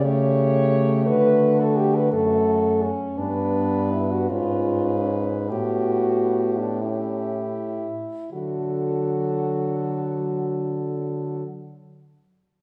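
A 6/8 pulse moves at a slow 37-59 BPM in dotted quarters, stretched freely with rubato and slowing further between 2.1 and 8.3 seconds, in this lyrical classical piece for horn quartet in D major, tuned to A4 = 439 Hz. A clear, punchy French horn carries the melody, while a mellow French horn sings a second line that sits up front and louder than the tune itself. A dark French horn with light vibrato and a smooth top supplies the inner accompaniment, and a warm, close-miked French horn anchors the bass from up front. All four horns play together throughout, moving through A7/C#, D, G, C#7/G# and Asus2 before settling on D as a new section opens at 8.3 seconds. The recital hall reverb is generous and heard from further back in the room, lending the lyrical passage a tender glow as it is cut from a longer piece.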